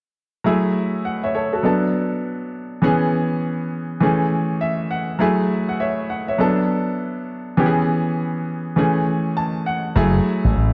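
A dark, warm production sits in a small room, bathed in wet echo chamber reverb with a 1.8-second tail. This slice of a longer R&B piece moves in a new jack swing groove at 101 BPM in 4/4, with a swung sixteenth-note feel in F# minor, and carries a confident, slick mood. A clear baby grand piano sits up front as the accompaniment, its natural tone and short sustain cycling through F#m9, Bm7, C#m7 and Amaj7 twice. The piano adds fills around 4.3 and 9.1 seconds that punctuate the end of each pass through the progression. At 10.0 seconds a slap bass arrives low and up front, its bright, amped, punchy electric tone shaped by an envelope filter, as the harmony returns to F#m9.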